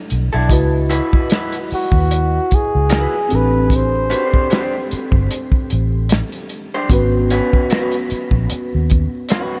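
R&B and neo-soul with a sultry, soulful mood, this short cut moves at 75 BPM in 4/4 with swung sixteenths, drifting through C#m11, Am7 and G#m11 in a dreamy mix soaked in huge ambient reverb and vinyl crackle. A mellow tine electric piano with lush chorus carries the chords, under-pinned by a dark, foam-muted fingered bass that sits round and punchy up front, a gritty, saturated soul drum kit with a tight kick and rolled-off top, and a picked electric guitar through a small old amp that sounds slightly broken-up and lo-fi as a second line. From 1.7 to 4.9 seconds a breathy, whispered flugelhorn takes the melody with vibrato, scooped notes and a touch of delay, intimate and close in the mix.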